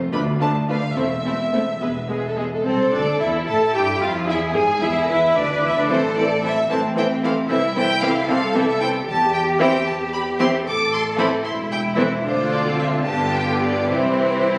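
Quick classical-period movement for string orchestra in a rubato 6/8, urgent and restless, where an up-front, focused violin section carries the melody over a background second violin line, a distant, even viola accompaniment, a rich symphonic cello section and a warm double bass section, all bowed with vibrato in a reverberant recital hall captured on a phone, with the harmony turning toward C major at 9.1 seconds in this cut from a longer piece.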